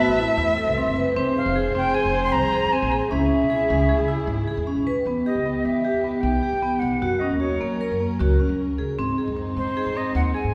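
Pensive and restless, this contemporary chamber excerpt in 5/4 sets an airy jazz flute melody with crisp chiff and vibrato over bright, ringing hard-mallet vibraphone arpeggios, a woody pizzicato upright bass and a dark, sul tasto string section holding sustained chords in the background, while a single bowed viola adds a distant second line until 4.8 seconds, all bathed in the deep reverb of a church or concert hall.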